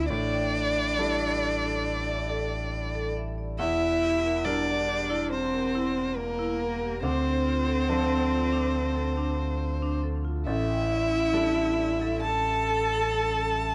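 Longing and melancholic, this short neoclassical excerpt drifts at a rubato 69 BPM in 4/4, with a close, expressive solo violin carrying the melody up front, full of vibrato and portamento, while a more distant bowed cello sings a second line beneath it. A grand piano with long sustain supplies the accompaniment over a deep, sine-like sub bass, and a dark, metallic vibraphone played with hard mallets rings out arpeggios in the background through tape echo from 0.1 seconds. The harmony moves from A7sus4 through Em7b5 and Dm7 before returning to A7sus4, all set in a small room with light reverb.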